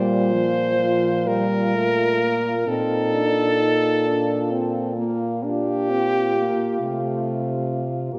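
A clear French horn with vibrato carries the melody up front in this serene, lyrical classical excerpt for horn quartet, unfolding in a rubato 12/8 at about 41-46 BPM, joined throughout by a mellow, vintage-toned horn singing a lightly vibrated second line and a pair of dark horns, one shaping the accompaniment and the other a smooth-topped bass, all set in a moderate concert hall reverb as the harmony moves from Bb5 to Cm7/Bb at 2.7 seconds.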